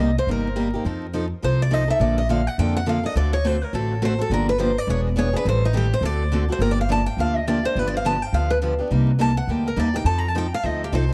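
From the first moment, a fiery jazz manouche trio is in full flight: a picked steel-string acoustic guitar takes a virtuosic solo over a second picked steel-string guitar and an upright bass, all three playing throughout this short excerpt cut from a longer piece. The lead guitar sounds fresh-stringed and concert-sized, with audible finger squeak, and carries a tape echo as it moves through its upper register. The accompanying guitar has a boxy, parlour character and sits up front beside it, both guitars sharing a bright edge. Beneath them, the pizzicato upright bass on gut strings is woody and thumpy, sitting a touch louder than the guitars. The swung, fast four-beat feel moves through a minor-key cycle of seventh chords, and a small, moderate room, dark production and vinyl crackle give the whole recording a vintage glow.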